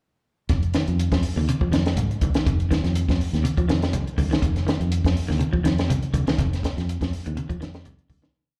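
At 0.5 s a compact cocktail drum kit, a fingered electric bass and a semi-hollow electric guitar start together on an F7 chord, setting up a driving, funky afrobeat groove at 122 BPM with a light sixteenth-note swing. The dark, up-front kit pairs a punchy kick with a high-tuned snare, the foam-muted bass plays a round, syncopated riff, and the clean, picked guitar repeats a hollow-bodied arpeggio ostinato with a slapback echo. It sounds like a live club gig heard through the house PA with light reverb, and this short piece fades out from 6.4 to 8.3 seconds.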